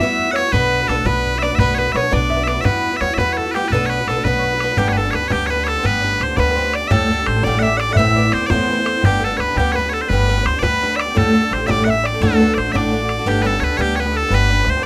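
A rollicking Celtic jig in 6/8 at 113 BPM drives this bright folk excerpt in B minor, cut from a longer piece. Loud, piercing bagpipes carry the melody up front in a continuous solo line, while a reedy, airy accordion in the background and a very quiet, twangy open-back banjo each play a second line, the banjo fingerpicked with a plunky, percussive bite. A picked, boxy ladder-braced acoustic guitar supplies the accompaniment, and a woody, growly upright bass played pizzicato anchors the low end. A boomy, close and dry bodhran sits behind the ensemble and drops out at 13.2 seconds, just before the end. The opening section moves between Emadd9 and Bm, then from 4.8 seconds the harmony opens onto G, Dsus4 and Amadd9, resolving through D back to G as the passage repeats, all in a light reverb.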